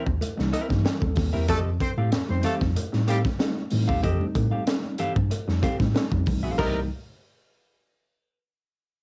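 A home recording on cassette with light reverb gives this short funk excerpt a lo-fi character, and its mood is playful at a straight 94 BPM in 4/4. A crunchy breakbeat drum kit sits up front with a punchy kick, a high-tuned snare, dark cymbals and hi-hat, its gritty, saturated tape-colored sound rolled off at the top. The bass line comes from a mellow tine electric piano heard through its built-in speakers, while a dark, clean semi-hollow electric guitar plays fingered accompaniment. A reedy electric piano adds stabs with a fast tremolo, and from 1.5 seconds a tight, clear horn section with vibrato plays a punchy second line as the harmony moves from C7#9 to F9. Very quiet thick-skinned congas and a metallic cowbell in the background fill out the percussion, and the chord returns to C7#9 at 6.6 seconds.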